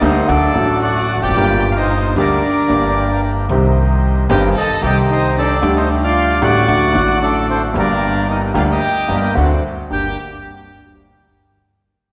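This dramatic, melancholic tango excerpt sits in a spacious hall with a long, wet reverb, yet the lead bandoneon comes across close-miked and dry, reedy and bright up front as it carries the melody. It moves at 112 BPM in 4/4 with a rubato feel in G minor, cycling through chords like Gm, Cm and Dsus4 before a D7 turns back home to Gm at 9.9 seconds. Beneath the melody, a single dark violin plays a bowed second line with vibrato and expressive portamento. A woody upright piano, polished and present with long sustain, supplies the accompaniment, while a pizzicato upright bass on gut strings gives a thumpy low end near the front. A second bandoneon, vintage and band-limited, adds very quiet stabs in the background.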